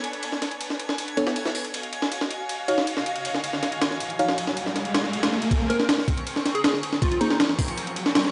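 A gritty, dry-sounding hardware recording with vinyl crackle and a lush hall reverb frames this dark, atmospheric drum and bass cut from a longer jungle piece, moving at 159 BPM in Bb minor over Bm9, Ebm9 and Bbm9 chords. A compressed, sampler-style breakbeat kit sits up front with a thumpy kick, a high-tuned snare, hi-hat and ride, beneath clear, bowed symphonic strings with vibrato and a faint, sparkling granular shimmer in the background. A deep, mellow chord stab with chorus and dub echo enters at 1.2 s under a filter sweep, an electronic riser builds from 3.6 s, and a punchy, catchy unison lead with phaser and dub echo carries a short melody from 5.7 s during the build-up.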